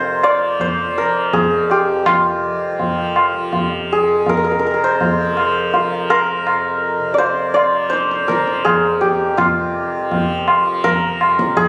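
Captured on a phone in a room with club-like reverb, this short excerpt of Hindustani classical music in raga kafi on F moves at 82 BPM in a straight 5/4 with a longing, introspective mood: an up-front, ringing santur carries the melody over a bright, buzzing tanpura drone, a high-tuned, band-limited tabla with a short ring joins at 0.2 s, and the music moves into a new section at 9.4 s.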